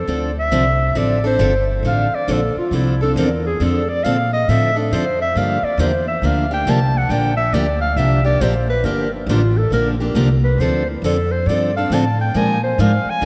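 A breathy clarinet and a woody, pizzicato upright bass open this bittersweet, fiery slice of acoustic string swing at 137 BPM, with a bright picked steel-string acoustic guitar joining at 0.1 seconds. The clarinet carries a jazz-style solo throughout, its smooth top colored by vibrato and scooped notes, over harmony that moves from Gm7 to Dm7 and Bb7. The three instruments sit up front inside a vast, echoing cathedral reverb, and the guitar, a concert instrument, lets an audible finger squeak come through.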